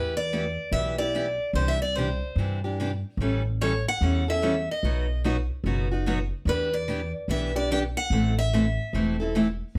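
Acoustic string swing in the jazz manouche style, this bittersweet, swinging excerpt moves at 146 BPM in E minor, tuned to A4 = 436 Hz, through Em, Cadd9, A7, B, Em7 and Am. A picked steel-string guitar with fresh strings and a boxy parlour tone carries the melody up front, with audible finger squeak. A second bright concert guitar plays the accompaniment, while a woody, thumpy pizzicato upright bass on gut strings anchors the bottom, all in moderate studio reverb.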